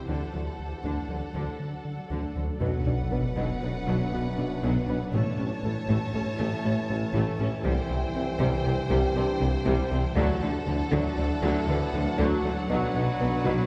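Moving in a straight 5/4 at 119 BPM in B minor, this vast, tense hybrid orchestral and electronic film cue, cut from a longer piece, sets an expressive, distant studio violin melody over a lush symphonic violin second line, viola accompaniment, a dark French horn section and a cloudy granular pad holding sustained chords, with a soft pluck arpeggiating, a muted felt upright piano adding intimate texture with audible action noise, and a deep analog bass riff above a low end of tuba, double bass and rich cellos, until a bright trombone section enters at 2.6 s alongside an electronic sub drop that lasts until 5.1 s, all heard from further back in a reverberant scoring stage.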